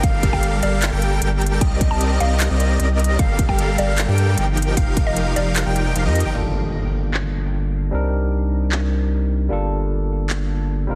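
This emotional, dreamy future bass excerpt opens straight into a drop at 152 BPM in a half-time feel, in G minor. A punchy, layered electronic kick and a trap kit with crisp hi-hats, handclaps and crash cymbal drive it, while a saturated sine sub bass sits deep and up front under huge, lush detuned supersaw chords that carry the riff through low-pass filtering and dub echo. In the background, a woody, mallet-like FM pluck carries the melody with chorus, phaser and delay, and an airy lead with vibrato spins soft, bright arpeggios through chorus and dub echo, the synths and bass all breathing with sidechain pumping. At 6.3 seconds the supersaws, pluck and lead stop as a very quiet electronic impact lands, and a barky, clean tine electric piano through a combo amp takes over the accompaniment with phaser and dub echo. The harmony cycles through Gm9, Cm9 and F7sus4, and the mix carries a heavily compressed, radio-like sheen with light reverb.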